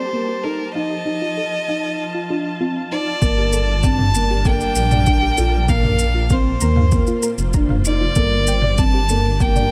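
Intimate and cinematic, this short excerpt of piano and strings electronica moves at 97 BPM in G minor, with a rich, focused solo violin carrying the melody up front over dark, woody sustained string chords, a felt-muted upright piano riff with a boxy, mellow tone, and soft round pluck arpeggios tucked in the background with chorus, tape echo and sidechain pumping. At 3.2 seconds the drop arrives, bringing in a rumbling detuned saw bass that pumps with the sidechain, a deep overdriven electronic kick, and overdriven electronic shaker and toms. The sound is dry, with little reverb, as the chords circle from Gmadd9 through F7 and Bbsus2.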